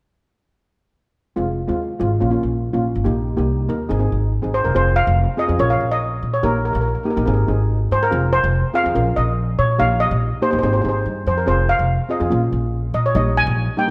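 A moderate scoring-stage reverb surrounds this tense, driving calypso in F minor at 143 BPM, cut from a longer piece. From 1.4 seconds, a growly, woody pizzicato upright bass on steel strings anchors the low end while a double-seconds steel pan played with medium rubber sticks cycles airy, shimmering chords through Fm, Bbm, Eb/Bb and Ab. At 4.5 seconds a metallic lead steel pan joins up front with a mid-forward melody carrying a slapback echo, and it plays until the cut ends.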